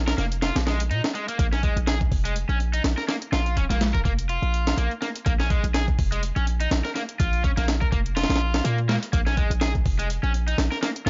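Gritty, raw breakbeat in Bb minor at 124 BPM with a 56% swing on the 16ths, taken from a longer piece. A compressed, pitched-up sampler-style kit with a thumpy kick and high-tuned snare sits up front beside a deep, boomy 808-style sine bass with a noise layer, while an analog electronic hi-hat recorded in a large room hovers in the background. A crunchy, overdriven electric guitar riff runs through tape echo, and the kick drops out between 0.4 and 1.4 seconds, all within a dark, warm mix under light reverb and digital ambience.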